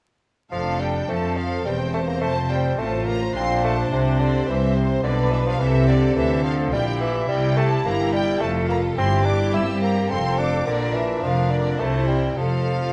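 A dark production with vinyl crackle and moderate recital-hall reverb frames this lively, festive baroque-style concerto movement in F major, moving at 106 BPM in a straight 3/4. A bassoon with light vibrato and a warm, vintage tone carries the melody alongside a focused, smooth-topped violin section up high, while a second, expressive violin section sits close beneath, and a distant viola section and a very quiet, bright, fingerpicked lute with doubled nylon strings fill in the accompaniment. Underneath, a clear cello section stays in the background as a rich double bass section sits up front, with the harmony circling F, C and C7 and turning to Bb at 10.7 seconds.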